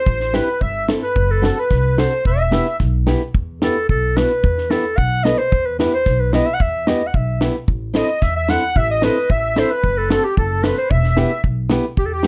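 Festive yet soulful, this short klezmer excerpt moves at 111 BPM in a straight 2/4, set in E harmonic minor. Up front, a warm clarinet carries the melody with a soft attack and a classical-style delivery. Beside it, a reedy, airy accordion with a sweet, light tremolo tuning plays a second line, dropping out at 2.8 seconds and returning at 8.0 seconds. A fingerpicked nylon-string guitar adds full-bodied accompaniment with audible finger squeak, while a woody pizzicato upright bass sits prominently underneath. A deep reggae drum kit, dry and dark with a tight kick, a high-tuned snare and a rolled-off top, anchors the groove as the harmony cycles through Am, F#dim and Em beneath a light reverb.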